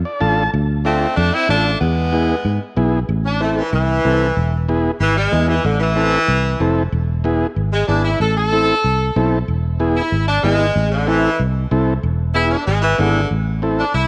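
A reedy transistor combo organ opens with a short fill, its clean tone carrying heavy vibrato, in this fiery, passionate cumbia excerpt cut from a longer piece. It moves at a brisk 188 BPM in straight 4/4, in A harmonic minor and tuned to A4 = 436 Hz. A fingered electric bass sits up front with a dark, round, foam-muted sound that is direct and amped. The bright saxophone section enters at 0.8 seconds, playing in a jazz style with light vibrato and a present, ensemble tone. From 3.1 seconds the saxophones take a solo over a harmony that moves between Am and E, reaching E7 before settling on Am at 13.3 seconds. The vintage organ stays lower in the mix as accompaniment, and a light, small-room reverb gives the whole a close, lively feel.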